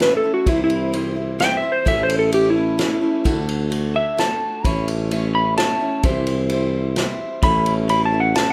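A rough home-demo sound with moderate studio ambience frames this 8.5-second excerpt of hopeful, jangly folk rock and heartland rock, moving at 129 BPM in a straight 3/4 over a C, A and D progression. An up-front, dark, slightly broken-up electric slide guitar takes a compressed solo throughout, set against a bright, full-bodied jumbo acoustic guitar played with a pick on fresh strings. Beneath them, a tuba with light vibrato and a smooth top carries the bass in a classical style, while a distant, roomy acoustic drum kit played with bundle sticks adds a tight kick, a medium-tuned snare and ride cymbal.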